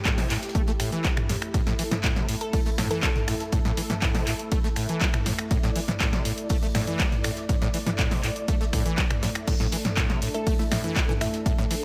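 Light reverb and a small room ambience frame this driving, hypnotic acid house excerpt at 121 BPM in straight 4/4, built over an A5 chord. A punchy, tape-warm electronic kick sits up front beside a punchy analog drum machine whose hi-hat, ride, crash, snare, toms, finger snaps and handclaps carry a short room on snare, clap and hats. Far beneath them, a very quiet damped 70s acoustic kit adds dry hi-hat, dark ride cymbal and a fat snare with a rolled-off top. The squelchy, resonant sawtooth acid bass riff runs through the whole cut with a fast-attack filter pluck, thickened by tube saturation, ensemble chorus and tape echo, while a smooth, detuned analog pad holds soft-attack sustained chords under chorus and sidechain pumping. A crystalline wavetable pluck with a noise layer flickers on A4 at 2.4 seconds and again at 10.3 seconds, soaked in cassette tape coloring and dub echo, just as a deep, nasal, dark chord stab with a sub octave and filter sweep arrives to close the passage.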